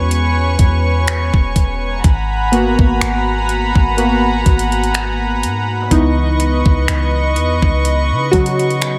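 A slow 4/4 groove with lightly swung sixteenths comes from a trap drum kit that enters at 0.1 s, its knocking kick, metallic hats and finger snaps sitting up front with the electronic, produced sheen of a kit re-recorded in a large room. This fragment of contemporary R&B, cut from a longer piece, carries a longing, late-night mood. A clean 808-style bass supplies deep, boomy sine tones that strike fast and decay into darkness. The featured voice is a set of analog synth keys, round and full-bodied, with a detuned sawtooth tone, a filter sweep and chorus, moving through an E6 chord before shifting to G#m9 at 2.0 s and C#m9 at 5.9 s. Above them, a dark studio string section holds sustained ensemble chords, bowed sul tasto with a soft attack and a pure, floating, smooth top, placed up front in a digital ambience.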